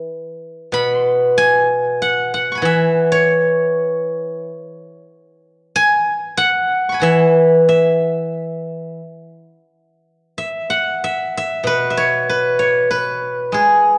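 Pastoral and serene, this short cut from a longer Chinese traditional piece features a solo steel-string zither, bright and silvery, played with fingerpicks up front across a range from B2 to C#6 in E gong mode, moving with a rubato feel around 88-98 BPM in 4/4 and shifting to a new section at 10.3 seconds, all heard through a recital hall's wet 1.8-second reverb and the warbling pitch drift of worn cassette tape.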